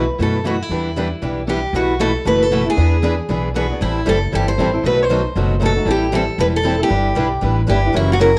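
Jazz manouche in E minor: a fiery, virtuosic acoustic string swing at 233 BPM, with swung eighth notes, cut from a longer piece. Up front, a bright, concert steel-string guitar carries the melody between E4 and C5 with audible finger squeak. Two parlour guitars, one warm and one boxy, supply the accompaniment, and a woody, thumpy gut-string upright bass anchors the low end through changes such as B7sus4, Em7, E7, Am7 and B7b9, all under a moderate studio reverb and the worn, warbly pitch drift of old cassette tape.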